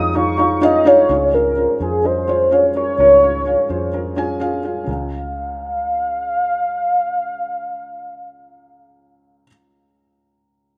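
Through moderate plate reverb in a rough home-demo mix, this anthemic, hopeful pop excerpt at 127 BPM in Db major sets a velvety, chorus-treated synth lead with a detuned sawtooth shimmer up front over a soft felt-muted upright piano with audible action noise, a dark, round, foam-muted electric bass, and a mellow French horn section that is barely audible until it stops at 0.9 seconds, while the lead carries the melody until 9.4 seconds and the piano plays on alone to 10.8 seconds.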